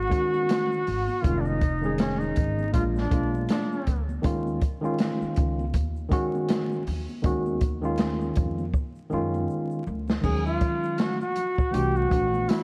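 A warm, scooped duduk carries the folk-style melody up front at 0.0 and again from 10.2 seconds, joined by a distant, breathy flute with delay, while worn, lightly overdriven tine electric piano, woody pizzicato upright bass, a dark open jazz kit with a boomy kick and a fill at 8.7 seconds, and background shaker and congas give this nocturnal, cool jazz-hop excerpt in Eb minor at 80 BPM its swung, dreamy, reverb-soaked feel over vinyl crackle.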